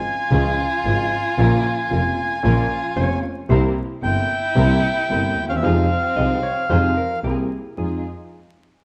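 Tango in F minor at 113 BPM with a rubato feel, melancholic and passionate, its reedy bandoneon carrying the melody up front while a distant violin, expressive with vibrato and portamento, adds a bowed second line until 7.2 seconds. A clear, worn concert grand piano with deep bass and long sustain accompanies, and a rich double bass bowed sul tasto gives a soft-attack, floating low end. A muted string section plays veiled con sordino stabs in the background, joined at 3.0 seconds by a clean, fingered hollow-body electric guitar on a second line, as chords move from Db through Bbm and C7 to Fm7 in this fragment of a longer piece, set in a moderate recital hall with dark production and vinyl crackle.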